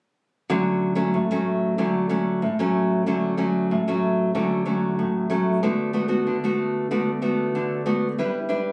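A straight 4/4 samba rhythm carries this short, festive clip, cut from a longer piece and lasting under ten seconds. A lone nylon-string guitar plays throughout, fingerpicked with a classical touch and an acoustic, warm tone that sits up front. Its line moves through lush Dmaj7, Bm7/D and G6 harmonies, with the second phrase arriving at 3.1 seconds to give the passage a lively sense of motion. The sound carries a moderate club-like reverb and some compression, with the casual closeness of a phone recording made in the room.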